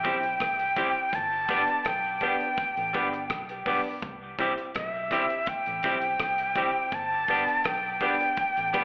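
A straight 4/4 groove at 83 BPM drives this uplifting roots reggae excerpt in C major, where a damped 70s drum kit with a tight kick, hi-hat and rim click sits under a round, foam-muted fingered bass, a clean picked semi-hollow guitar and mellow, woody, slightly detuned upright piano stabs, while a breathy jazz flute with vibrato and a crisp chiff leads up front through tape and slapback echo, the whole performance heard as a live gig through the venue's PA with lush hall reverb and a thin telephone-like tone as the chords move between C and G.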